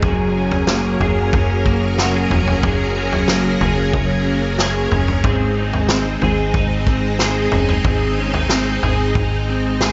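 Floating and ethereal, this dream pop excerpt moves at 92 BPM in a straight 4/4, set in Ab mixolydian and tuned slightly low to A4 = 439 Hz. A shimmering, vintage string machine voiced as violins holds soft-attack sustained chords through an ensemble chorus. Up front, a dark, slightly broken-up electric guitar picks arpeggios, coloured by analog chorus and tape echo. Beneath them, a plucky analog bass with a fast-attack, decaying filter pluck gives a punchy, funky footing in the low register, while an acoustic vintage kit with a punchy kick, medium-tuned snare and toms sits mid-forward with a rolled-off top. All four parts play throughout the 9.9 seconds, moving from Gbadd9 to Ab at 5.2 seconds, and the whole is bathed in a moderate concert hall reverb, with nothing sounding above 7.9 kHz.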